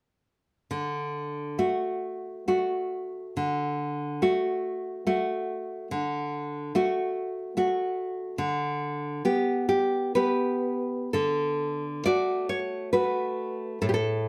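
A bright, full-bodied nylon-string guitar sits up front, fingerpicked in a classical style with a slapback echo and light reverb, ranging from A2 to D5 in this short passage cut from a longer romantic piece for solo guitar. In D major and 3/4 time, it moves with a tender, nostalgic rubato between 58 and 75 BPM. Entering at 0.7 seconds, the harmony rests on D before shifting to G over D, then returns to D as a new section opens at 11.1 seconds and runs to 14.3 seconds.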